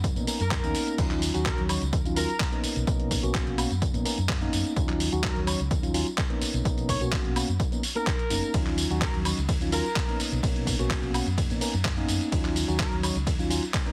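Filtered disco house at 127 BPM in straight 4/4, this short cut from a longer piece sits in Eb minor and feels nostalgic and sensual, rocking between Bmaj9 and Ebm9 chords throughout. A dry, punchy electronic kick anchors the groove alongside a gritty, sampler-style soul drum kit whose hi-hat, handclaps, tambourine, woodblock, ride and crash cymbals all pump against the sidechain. A round, dark fingered electric bass, amped and also pumping, moves between F#1 and B2 underneath. From 0.2 seconds a mellow, clean tine electric piano fills in the harmony through a phaser, ducking with the same sidechain motion. A horn section enters at 0.4 seconds to carry the melody in a narrow high range with vibrato and tape echo, pop-styled and present, before dropping out at 12.9 seconds. The mix is close and dry with little reverb, squeezed into a heavily compressed, radio-like sound.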